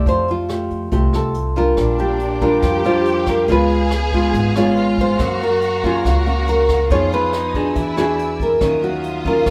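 A straight 4/4 bossa nova groove at 140 BPM, set by a brushed jazz kit with a boomy kick, rim click and hi-hat under a woody, growly pizzicato upright bass, carries this romantic, sophisticated excerpt, where a full-bodied fingerpicked nylon-string guitar sings the melody over a small, up-front fingerpicked nylon-string accompaniment, and at 1.8 s a dark, distant symphonic violin section adds a lush vibrato second line while an intimate sul tasto chamber string section murmurs soft-attack sustained chords in the background, all in a light live-room reverb.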